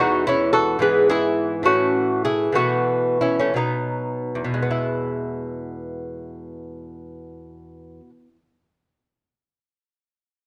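Dance-like and radiant, this short baroque-style classical excerpt in E major and 6/8 features a solo lute, bright and delicate with fingerpicked nylon double strings and some octave-doubled courses, placed up front with close, detailed miking in light reverb, moving at a rubato 49-73 BPM that slows through its opening 4.7 seconds before the chords come home to E and the lute falls silent at 8.4 seconds.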